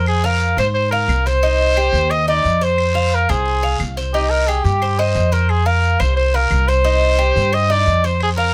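A straight 4/4 pulse at 177 BPM drives this danceable, warm Latin excerpt in Cuban son and guajira style, set in C minor and cut from a longer piece. Woody claves sit dry in the background from 0.1 seconds, alongside a raspy, band-limited guiro with a vintage edge. Upfront, a thumpy upright bass with gut strings plays pizzicato lines between C2 and Ab2, while a Cuban tres picks metallic, double-strung arpeggios, some strings doubled at the octave. Over them a punchy solo trumpet carries the melody from G4 to Eb5 with light vibrato and a vintage pop-style tone. The harmony moves between Fm, Cmadd9, Cm and F5, and the close, detailed sound with little reverb keeps every part intimate through to 8.5 seconds.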